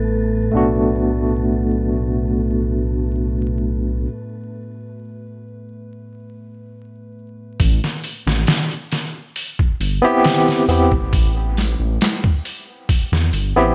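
Cinematic and melancholic, this trip hop excerpt drifts at 68 BPM in A dorian, opening on a dark, nasal analog pad with chorus and a filter sweep, a breathy wind-like noise texture, and a deep, rumbling detuned saw bass with tube saturation, all under a haze of vinyl crackle. A barky, lightly overdriven tine electric piano with tremolo and tape echo plays accompaniment up front, falling away for a break at 4.1 seconds and returning at 10.0 seconds. At 7.6 seconds the pad gives way to a gritty, pitched-down sampler-style drum kit with a thumpy kick, a medium-tuned snare, hi-hat and studio reverb.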